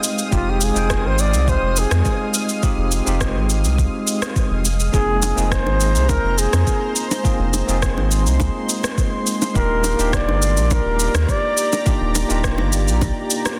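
Sunset chillout in F dorian at 104 BPM, wistful and smooth, this brief cut from a longer piece drifts over Fm9, Bb9sus4/F and Ebmaj7 as a breathy, close-miked flugelhorn sings a jazz-style solo melody with scooped notes and tape echo from 0.3 to 11.9 seconds. A bell-like tine electric piano with tape echo and a shimmering, ethereal pad with chorus and granular octave-up shimmer hold the harmony, while a deep, round analog bass sits up front alongside a soft electronic kick and tape-warm electronic cabasa and rim click, the snare lightly clipped. Low-tuned, close and dry bongos join in the background at 5.2 seconds, all within light digital ambience and a dense, heavily limited modern master.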